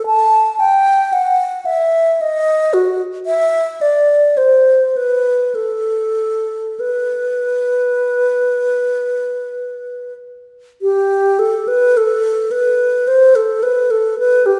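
Mournful and yearning, this short classical fragment features an unaccompanied wooden-headed alto flute playing alone and up front for its full 14.6 seconds, moving freely in 3/4 at a rubato 39-58 BPM between F#4 and A5 with an airy, straight tone, soft attacks and lifted highs, shifting to a new section at 10.8 seconds, all set in the lingering reverb of a church or concert hall.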